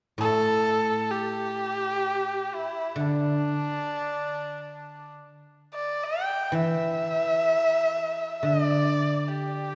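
Graceful and pastoral, this short passage from a longer Chinese traditional chamber piece unfolds in a free, unmetered way. A single bowed erhu carries the melody from 0.2 s to 9.8 s, sitting up front with an intimate, close presence, a soft attack, light vibrato, gliding portamento and an airy bow tone. Beneath it, the guzheng supplies accompaniment in a low register across the same span, its fingerpicked strings ringing with a silvery, acoustic sheen. Both instruments are placed up front, yet the whole is heard from further back in a concert hall, whose lush reverb with a 2.2 s decay lends a gentle glow around the phrases. The pairing of the singing bowed line and the shimmering plucked support gives the passage a calm, open-air elegance.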